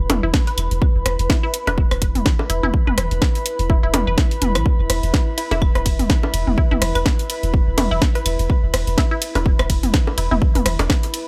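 A dry, close-sounding minimal techno excerpt at 125 BPM with a 16th-note swing, hypnotic and quirky, built on an up-front punchy electronic kick and a deep sine sub bass with a pitch-drop attack that pumps from the sidechain, while a layered house kit adds cracking snare, hi-hat and ride, an overdriven organic electronic kit scatters bongos, claves, rim clicks and toms through tape echo, a squelchy, juicy sawtooth blip pluck riff with a moving notch runs through chorus, phaser and tape echo, and a warbling, nostalgic lo-fi pad with slow attack and long release sits softly underneath.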